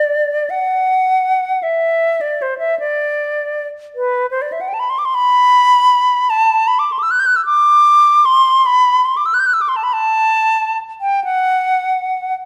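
Serene and lyrical, this short classical passage cut from a longer piece features a solo silver concert flute with a pure, warm, metallic tone, vibrato and soft attacks, placed up front and playing from 0.0 to 12.3 seconds between B4 and G6 in a free, rubato 6/8 at roughly 39-53 BPM, tuned to A4 = 443 Hz and set in a moderate recital hall reverb.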